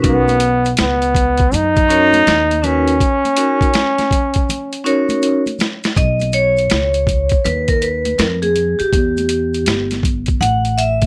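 Jazz-hop built on a hip hop foundation, this short cut from a longer piece moves at an unhurried 81 BPM in B major with a swung sixteenth-note feel and a warm, smooth mood. A bright trombone with light vibrato and scooped notes carries the melody up front in a vintage jazz style, sitting in plate reverb until it drops out at 5.2 seconds. Beneath it, a vibraphone struck with medium hard mallets rings out dark and metallic, its slow motor vibrato also bathed in plate reverb, and it takes over with a solo from 6.0 seconds as the harmony shifts from Bmaj9 toward Badd9, Em and A5. The gritty, compressed, pitched-down boom bap kit pairs a thumpy kick with a high-tuned snare and hi-hat, breaking down at 3.0 seconds and rolling through a fill into the second section. A woody pizzicato upright bass anchors the low end, while a tube shaker and congas sit very quietly in a small room, all under a light reverb.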